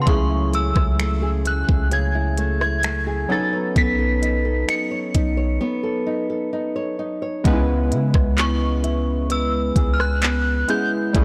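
Contemporary R&B with a late-night, sensual mood, moving at a slow 65 BPM in C# minor and cut from a longer piece, built over F#m9/C# and B9 chords before a break at 5.6 seconds and a shift to C#m7 at 7.5 seconds. A chiming, inharmonic FM synth chime carries the high melody through ensemble chorus, phaser and delay, over detuned analog keys with a filter sweep and chorus and fingerpicked nylon-string guitar arpeggios with delay. A deep, boomy 808-style bass and an up-front trap kit from 0.1 seconds, with a knocking kick, crisp hats, snaps, handclaps, rim clicks and a soft-clipped snare, sit in a dry, blown-out, overdriven mix.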